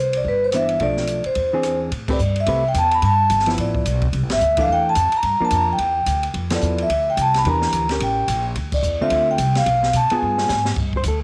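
Jazz in a small-group swing and bop vein, this sophisticated, swinging excerpt puts a ringing, metallic vibraphone up front on melody, played with medium mallets and the motor off, over a woody, growly pizzicato upright bass. A dark, clean hollow-body electric guitar, fingered and compressed with plate reverb, comps from 0.5 s, while an acoustic kit with dark cymbals, a high-tuned snare and a boomy kick drives the pulse. The band hits accents at 2.1 s and beyond, a drum fill arrives at 10.2 s, and the home cassette recording lends the whole a light, lived-in room sound.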